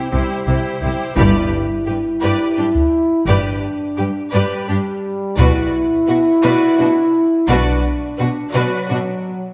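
Mellow, distant French horns sustain chords over a bowed string section in this heroic, triumphant excerpt of an epic orchestral film score in G major, moving at 57 BPM in a slow 6/8: clear violins carry the melody with light vibrato, warmer, lush violins add a second line, intense violas accompany, focused cellos and rich double basses hold the bass, and heavy-stick taiko drums arrive with a full-ensemble accent at 1.2 seconds and play until 6.7 seconds, as the harmony passes from C to G to B minor in a reverberant scoring-stage space.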